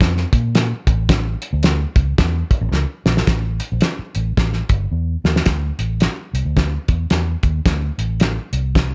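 This dry, close-sounding excerpt captures an uptempo soul groove in a 1960s style, passionate and urgent, with a swung eighth-note feel. A cloth-damped acoustic drum kit sits up front in a small room, its fat snare, tight kick and hi-hat carrying a thuddy weight and a rolled-off top. Beneath it, a vintage fingered electric bass, foam-muted and amped, gives a dark, round and punchy line between G1 and Bb2, also placed up front. Both parts play throughout, moving through three short sections in under nine seconds. Drum fills at 2.7 s and 4.9 s mark the turns into each new section, keeping the momentum pressing forward.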